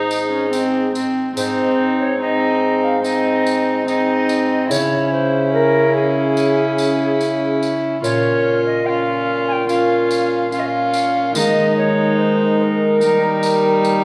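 Set in a wet recital hall, this excerpt of a courtly, festive renaissance-style consort dance in Ab major moves at 72 BPM in 4/4, with an airy, chiffy alto recorder singing the melody with vibrato over a nasal, gut-string violin second line, a reedy, smooth-topped viola and a ringing, thumb-plucked concert harp in the background as accompaniment, a dark, punchy bassoon on the bass, and a jingly, bright tambourine joining at 0.1 s.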